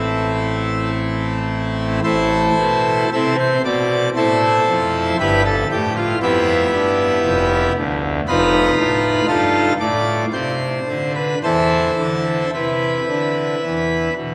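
Dark and grave, this short cut from a longer classical piece is a chorale-style passage for solo pipe organ in a slow triple metre, its beats uneven and pulled about with rubato. The organ plays with full registration throughout, its mixtures giving a majestic, brilliant baroque voicing with audible chiff on the attacks, and it sits up front in the sound. Its range spans from a deep F1 up to D5. A brief opening statement on A minor gives way at 2.0 seconds to a longer second section, where the harmony moves through Em/G and Dm/F to a weighty F7. The passage comes to rest on an Esus4 before closing on a bare E5 at 13.6 seconds, all of it bathed in a cavernous cathedral reverb that lets each chord hang long in the air.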